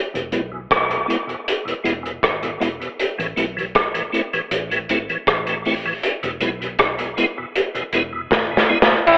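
A straight 4/4 dub reggae groove at 79 BPM, cut from a longer piece, rides on a crunchy, saturated breakbeat kit up front, with dark cymbals, a tight kick and rim clicks. Beneath it, a foam-muted, round electric bass holds the low end under a piping, lightly overdriven tonewheel organ, which carries chorus vibrato, a slow rotary speaker, dub echo and a filter sweep. The spacious, deep mood sits in a wet spring reverb with a telephone-like tone as the chords move from E to Am and back, and a drum fill from 8.3 seconds leads into a brief, raspy, growling trombone note at 9.1 seconds.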